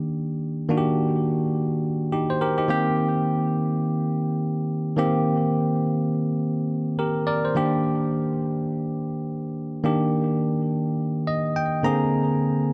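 A 16th-note swing at 105 BPM in 4/4 drives this punchy, confident R&B passage, carried entirely by a solo tine electric piano whose bell-like, barky tone sits clean and up front, treated with tape echo and ranging from D3 to Bb5. The harmony moves from Ebmaj7 to a long stretch on Cm7 before landing on Bb9 at 11.8 seconds, just after the piano launches a fill at 11.0 seconds. A light reverb and dark production frame this brief section, which is cut from a longer piece.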